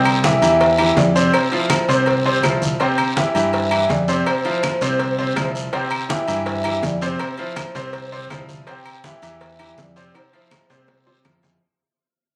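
Recorded on a phone in the room with a moderate plate reverb, this joyful, danceable salsa fragment at 164 BPM in 4/4 fades out across its full length. A pure, breathy sine lead with chorus carries the melody, its dark, vintage tone gliding and warbling with vibrato and portamento over soft, sustained notes. A brilliant, polished grand piano sits up front with short sustain, while a bright, direct fingered electric bass anchors the low end. The percussion is thick: compressed, saturated congas with a thin skin, ringing metal-shell agogo bells and timbales, raspy guiro, and, further back, woody claves and round, soft-handed cowbell and bongos. The harmony alternates between C and F5, and a drum fill arrives at 10.1 seconds before the clip ends.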